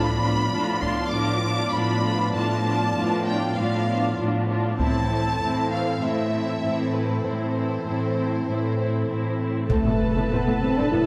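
A lush cello section sits up front in this tense, vast cinematic cue, a hybrid orchestral and electronic film score cut from a longer piece, holding a low bowed A with even, vibrant tone throughout. Above it, a focused violin section carries the melody with a smooth top, while a distant, expressive viola section fills the middle. A detuned sawtooth analog pad with soft attack and chorus sustains chords alongside the strings, giving the orchestra a hazy electronic glow. A close, dry taiko ensemble struck with heavy sticks punctuates the passage in short bursts, and the harmony settles from a diminished colour into A minor. At 9.7 seconds an electronic impact lands as a mellow French horn section enters on sustained chords and a second, distant violin section adds an even second line over an Amadd9 chord. A wet concert hall reverb surrounds the ensemble, lending it grand, spacious depth.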